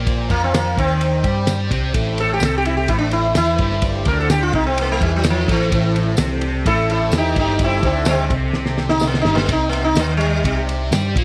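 A straight 4/4 groove from a damped 70s drum kit, with its fat snare and tight kick, drives this hazy, kaleidoscopic stretch of psychedelic rock alongside a round, punchy picked electric bass, with a tambourine jingling in the background. Up front, a buzzing sitar with sympathetic strings and slapback echo carries the solo melody from 0.3 seconds. Beneath it sit a bright, double-tracked fuzz guitar riff treated with phaser and a very quiet, lush string machine holding sustained chords from Csus2 to Am7, and a drum fill between 8.6 and 9.5 seconds brings back Csus2 inside light reverb and small room ambience.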